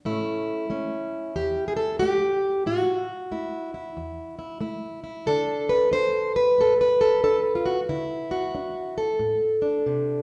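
A loping swung feel in four drives this short acoustic country blues cut, setting a laid-back yet gritty mood. A lone fingerpicked steel-string acoustic guitar, plugged in and played solo throughout its 10.2 seconds, carries the whole performance from low bass strings up into its higher register. Its tone is boxy with a parlour-size character, and it sits up front in the mix. The harmony moves from an A7 to a D7 at 5.3 seconds, giving the passage a relaxed, bluesy lean. A lush recital-hall reverb surrounds the guitar, lending the close, earthy picking a spacious church or concert-hall glow as the piece is cut short.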